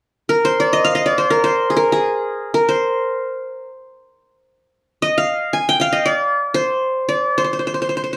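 A bright-edged qanun, its triple strings plectrum-plucked and up front, spins a melancholic, hypnotic Turkish melody in free time from 0.3 seconds in this short excerpt from a longer piece, set in a wet studio ambience heard from further back in the room.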